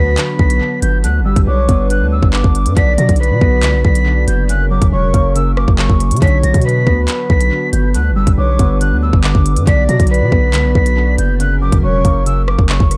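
An airy, vibrato-laden jazz flute with a chiffy attack carries the high melody through a tense, menacing half-time drill hip hop clip at 139 BPM in B harmonic minor, joined below by a breathy, flute-like synth lead playing a second line with chorus and tremolo that drops out at 12.2 seconds, over glassy, wave-folded digital keys with a filter sweep, a soft, warbling vintage pad in the background, and a deep, sine-toned 808-style bass, while an up-front electronic drum kit with a hard-clipped kick, crisp hi-hats, handclaps and rim clicks enters at 0.2 seconds, all cycling Bm, G and F# in a dry but echo-heavy mix.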